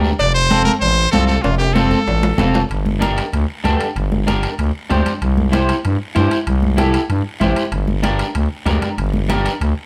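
A straight cumbia groove in 4/4 drives this fiery, passionate Latin passage, built on a raspy guiro in the background, ringing, close and dry cowbell and timbales, and bright, thin-skinned congas that join at 0.5 seconds. A brilliant, punchy trumpet with vibrato and scooped notes takes a forceful solo up front until 2.5 seconds, and a drum fill leads into the second section at 2.7 seconds. Beside it, a thick, growling FM bass and a picked, slightly broken-up electric guitar with lush chorus carry the harmony under light reverb in this excerpt from a longer piece.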